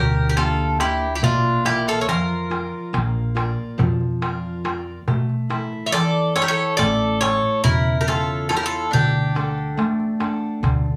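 Greek folk played by a bouzouki band in a straight 9/8, wistful and reflective in mood, heard as a brief cut from a longer piece. The bouzouki carries the melody up front, its picked double strings bright and metallic with some octave-doubled courses, set in a plate reverb. A mandolin adds a round second line on its own paired strings, while a full-bodied jumbo steel-string guitar, also up front, picks the accompaniment with audible finger squeak. An upright bass played pizzicato gives a woody low end, and a crisp, band-limited metal-shell darbuka with a vintage character joins at 0.2 seconds. The harmony moves from G minor through B-flat to A and on to D, all within a small, moderately ambient studio room.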